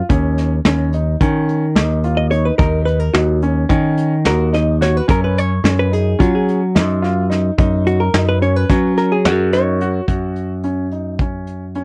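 A dry, close recording in a 1970s studio style gives this progressive instrumental band piece an intimate, in-the-room presence. It is cut from a longer piece, and it moves in a driving, intricate 9/8 at 216 BPM counted in eighths, centred on F# major. A clear grand piano opens at 0.0 s with arpeggios in the middle register. A picked electric bass with a bright, growly tone and a muffled, lo-fi brush drum kit with a punchy kick enter almost at once and sit up front. At 2.2 s a dark, clean hollow-body jazz guitar takes the melody, played with the fingers and compressed, and carries a solo until 10.0 s. The harmony moves from D#7(no3) to C#5/F# and settles on F#5 at 7.6 s, before a closing section begins at 10.1 s.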